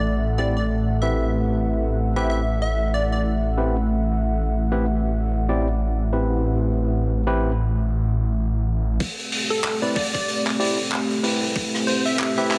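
Glitch hop at 94 BPM in A dorian with a gritty, playful swing, where a thick, swirling phased detuned saw bass with overdrive holds A1 until 9.0 seconds under a moody analog pad with chorus, 12-bit sampler grit and sidechain pumping, barky overdriven tine electric piano stabs through tape echo, and a punchy, catchy plucky unison lead with tape echo, before an electronic knocking kick and a loose, saturated indie kit of handclaps, hi-hat and rim click arrive at 9.0 seconds for a build-up in light reverb, cut from a longer piece.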